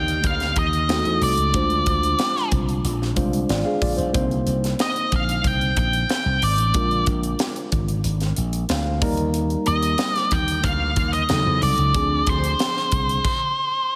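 An octave-fuzz lead guitar sits up front carrying the melody, its dark, picked distortion voicing a line between C5 and G5 across the full 14 seconds of this cut from a longer piece. Beneath it, a worn, slightly out-of-tune tine electric piano plays clean through a combo amp, its accompaniment bathed in lush chorus, with a brief fill at 8.4 seconds. A bright, amped slap bass adds punch in the low register, while an airy, polished fusion drum kit with a high-tuned snare, punchy kick, hi-hat and crash cymbal keeps a straight 4/4 at 92 BPM. The result is nocturnal, slick 1980s jazz-funk pop, moving through Ebmaj7, Cm7 and Bb7 colors before the harmony drops out at 13.2 seconds. A moderate hall reverb gives the whole mix a big arena sound.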